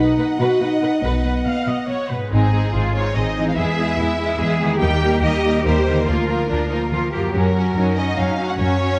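In a brisk, straight 3/4 at 143 BPM, this triumphant, adventurous cue from a heroic adventure film score is cut from a longer piece and moves through a chord sequence running from B through Ab, E, Eb and Bb/D to Gb. A violin section carries the melody with a lush, vibrato-rich tone and a smooth top, while a second violin section adds a focused second line beneath it. The viola section fills in the accompaniment from a slightly distant position, and the cellos lay down a bass line alongside the double basses, which enter at 1.0 s and sit up front with a deep, even body. A clear French horn section sounds sustained chords up front with light vibrato, and they are heard only until 1.9 s. Under the strings, a very quiet concert harp rings out mellow fingerpicked arpeggios. The whole ensemble sits in a moderate scoring stage reverb that gives the bowed strings an expansive, cinematic sheen.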